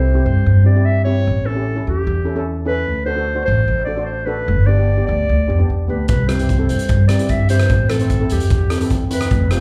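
A smooth-topped clarinet carries the solo melody in a mellow, classical style across this carefree, sunny calypso fragment, moving over a C, A7, D7, G, C, Am progression. Shimmering, metallic steel pan played with medium rubber sticks and a slapback echo fills in the accompaniment, while a woody, up-front pizzicato upright bass anchors the bottom. At 6.1 seconds a loose acoustic drum kit joins with hi-hat, rim clicks and a punchy kick in a pumping room, all heard as a live gig through the venue's PA with club reverb.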